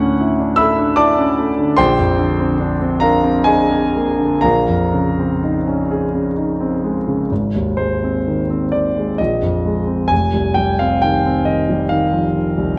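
Hazy and luminous, this short excerpt from a longer impressionist classical piece for solo piano drifts in 3/4 at 60-77 BPM with a free, rubato feel. A concert grand sits up front, intimate and warm, with deep bass reaching down to F1, long sustain and audible action noise, as lush chords such as Dmaj9, Bbadd9 and Bbm11 give way at 7.3 seconds to a new passage that moves through Bb9sus4 before settling on Fsus2. A moderate scoring-stage reverb surrounds it, while worn cassette tape adds a warbling pitch drift to the sound.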